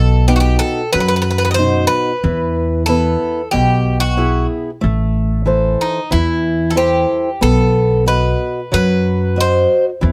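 Close, detailed microphones and light reverb give this brief cut from a longer Greek folk piece an intimate presence, with bouzouki, guitar and bass all placed up front. At a straight 92 BPM in 4/4, the bright, metallic Greek bouzouki carries a bittersweet, brooding melody on picked double strings, some doubled at the octave, over a fingerpicked acoustic archtop guitar whose warm tone carries the occasional finger squeak. A woody pizzicato upright bass on steel strings anchors the B, E, Am, B progression, and the bouzouki stops at 9.8 seconds, just before the guitar and bass finish at 10.1 seconds.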